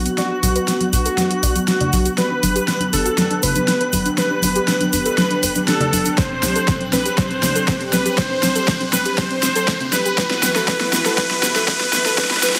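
A thick, detuned sawtooth unison lead opens this dreamy, expansive progressive house build-up, set over a smooth analog pad with chorus, a soft, dark pluck playing arpeggios in the background under a filter sweep, a tight, wave-folded sequencer bass and a faint twinkling granular texture, each carrying sidechain pumping. Almost at once an overdriven big-room kit sits up front in a drum fill with its huge snare and hi-hat, joined by a grainy, close egg shaker and ringing congas, while a very quiet electronic riser enters at 4.1 seconds. A punchy, layered electronic kick drum arrives at 6.2 seconds as the chords move from Bm through G and Csus2 to Emadd9, the whole fragment sitting in a moderate room reverb.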